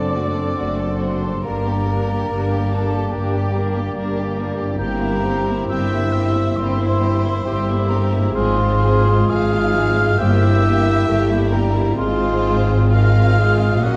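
Set in a dark, wet scoring-stage reverb, this serene classical excerpt drifts in rubato 4/4 at 60-73 BPM and settles into F minor from 4.8 s: a rich, vibrato-laden chamber violin section carries the melody while a second, expressive and close violin section, an airy silver flute, a soft-attacked oboe, a background clarinet, a roomy bassoon, a very quiet viola section, a mellow French horn section holding sustained chords, a ringing thumb-plucked harp in arpeggios, and a bowed cello section with a focused, distant double bass section beneath fill out the texture.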